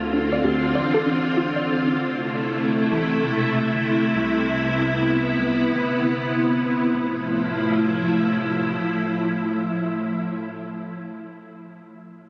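Swung 16ths at 97 BPM in 4/4 give this glitchy, playful IDM fragment in F lydian its gait, as a silky, warbling string machine holds up-front chords through Dm7, Am, Cmaj7 and Fmaj7, a deep, round analog bass sits in the background under a filter sweep until 6.9 seconds and drops out at 8.8, and a soft, detuned pluck with chorus, digital delay and its own filter sweep spins dark arpeggios until 2.0, all bathed in a huge 6.2-second reverb and captured on a phone in the room with studio ambience and compression.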